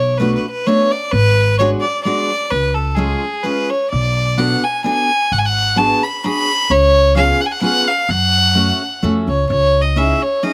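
Musette waltz in F# harmonic minor at 129 BPM with a bittersweet, nostalgic mood, in which a nasal, bowed violin with light vibrato and an airy bow carries the melody up front over a full-bodied picked steel-string acoustic guitar with fresh strings and a woody, thumpy pizzicato upright bass, moving through Bm7, G#m7b5 and C#7 to F#m before a brief turn to C#madd9 at 9.5 seconds, all captured dry and open-air in this short fragment of a longer piece.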